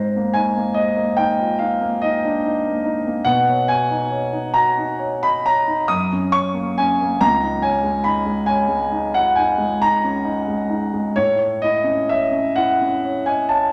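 Moving in a slow, rubato 9/8, with the dotted-quarter pulse floating between 41 and 49 BPM, this brief excerpt from a longer impressionist classical piece for solo piano feels mysterious and nocturnal. A single concert grand carries everything from 0.0 to 13.7 s, spanning C#2 to D#6, with a deep bass, an open character and long sustain, placed up front in the sound. The harmony drifts through colorful chords, from G#add9 to Badd9, then F#, a lingering C#69 at 7.2 s, and finally A. The piano sits in a recital hall whose wet reverb, about 1.5 seconds long, lets each chord bloom into the surrounding space. The instrument is tuned slightly high, with A4 at 441 Hz.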